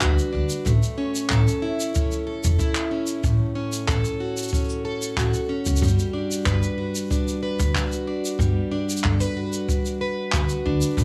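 Dry, with only a small room's ambience, this 11-second cut from a longer folktronica piece sounds hopeful and warm at 93 BPM in G lydian. A shimmering, octave-doubled twelve-string acoustic guitar sits up front, picking arpeggios through tape echo over Gmaj7, A, A6 and back to Gmaj7. A woody pizzicato upright bass, a boomy brushed kick drum, and brushed shaker and handclaps carry the straight 4/4 pulse beneath it.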